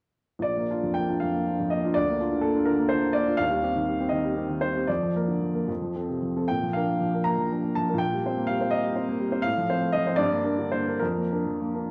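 Hopeful and warm, this brief excerpt from a romantic character piece for solo piano unfolds in Bb major in 6/8, its pulse flexing with rubato between about 67 and 86 BPM. The upright piano sounds warm, woody, natural and close, covering a span from Bb1 to Bb5 as the harmonies move from Bb through Cm/Eb and F toward Gm before settling back on Bb/F. A moderate recital-hall reverb adds a soft bloom around the instrument until the recording is cut off at 11.9 seconds.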